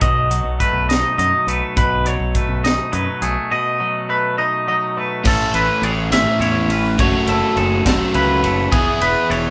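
A crunchy, double-tracked overdriven guitar riff enters at 5.2 seconds over clean, twangy picked guitar arpeggios and a second twangy guitar's accompaniment, a growling overdriven fingered bass and a crisp, airy fusion kit with a high-tuned snare and punchy kick in this wistful, intricate math rock and midwest emo excerpt in 6/8 at 69 BPM, as the harmony moves from B7 to Amaj7, F#m7 and E in a small, reverberant room.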